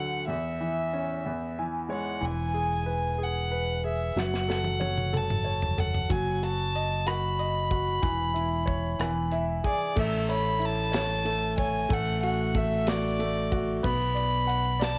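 This 15-second excerpt from a longer piece features a soft-attack violin, played sul tasto with a pure, floating tone, carrying the melody up front from the start, colored by cassette tape and analog delay. It is a heartfelt, swaying pop ballad in A major, moving in a six-eight lilt at 62 BPM. A bright concert grand piano with deep bass and short sustain accompanies from the opening, also touched by cassette tape, and adds fills near the start and again just before 10.0 seconds. A round, fingered electric bass enters at 2.2 seconds, direct and up front, and a polished acoustic drum kit with a punchy kick and medium-tuned snare arrives at 4.2 seconds with a fill, using crash, ride, hi-hat, rim click and toms in an airy small room. Chords drift from C#m/E and E through F#m and B7/F# before settling onto A, D/A and Bm, and the whole has a light reverb and the soft, rolled-off top of a home cassette recording.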